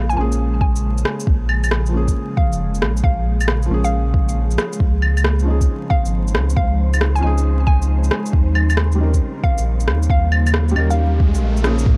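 An up-front, round sub bass anchors this melancholic, ghostly future garage excerpt at 136 BPM with a 16th-note swing, pumping under an overdriven soft electronic kick from 0.6 seconds, overdriven shaker, rim click and claves, a felt-muted upright piano with audible action noise and tape echo, an ethereal detuned pad with phaser and ensemble chorus, and a hollow, bouncy square pluck melody with digital delay, while a breathy wind-like tuned noise texture drifts in the background from 5.7 seconds and a riser and sub drop arrive at 10.2 seconds, all over Bbm7, Dbadd9 and Eb7 chords in a dark production dusted with vinyl crackle.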